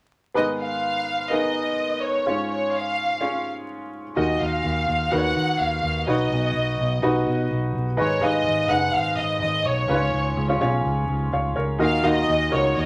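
Driving and earnest, this pop excerpt moves at 126 BPM in a straight 4/4, set in G# dorian and cut from a longer piece. A bright upright piano opens the accompaniment at 0.3 seconds, its woody, intimate tone carrying audible action noise close up front. A violin section enters almost at once with the melody, its bowed ensemble sound smooth and even, with vibrato and a silky top. At 4.2 seconds a fingered electric bass joins underneath, dark and round, with a direct, amped presence. The harmony cycles through G#m, C#, D#m and Badd9 before returning to G#m, C# and D#m as the second section begins at 8.0 seconds. A short, wet studio reverb and a layer of vinyl crackle give the whole recording a softly worn character.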